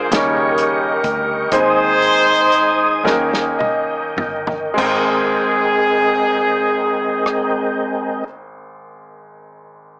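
In a slow, straight 6/8 moving at 32-44 BPM in dotted quarters, this uplifting, reverent gospel excerpt in Ab major slows down through its first 4.8 seconds. A warm horn section carries the melody up front, its light vibrato and roomy, distant tone giving the line a pop-style ensemble sheen. A clear baby grand piano accompanies with intimate, natural sound, audible action noise and long sustain, and it is the last part heard, ringing on to 10.0 seconds. Beneath it a soft, flute-like tonewheel organ holds sustained chords through a fast rotary speaker with chorus vibrato, while a punchy, foam-muted fingered bass sits in the background. The dry, muffled, lo-fi soul kit adds dark cymbals, rim clicks and toms, and both drums and piano play fills from 3.0 seconds as the harmony moves from Eb7 and Ab/Eb to settle on Abmaj9. A moderate large studio reverb and small room ambience surround the whole through a small-speaker sound.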